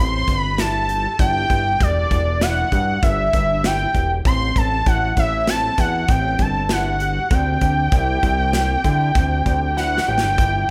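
Progressive instrumental in an uneven 5/4, intricate and driving: a fat, detuned sawtooth lead with chorus, vibrato and portamento carries the bright, up-front melody over a thick, wave-folded analog bass with a filter sweep, while a mellow, clean, fingered electric guitar sits dark in the background with arpeggios through Am7, G5 and D9sus4, and an airy, polished acoustic drum kit with a punchy kick drives the band in a large studio reverb before a drum fill at 9.8 seconds closes this cut from a longer piece.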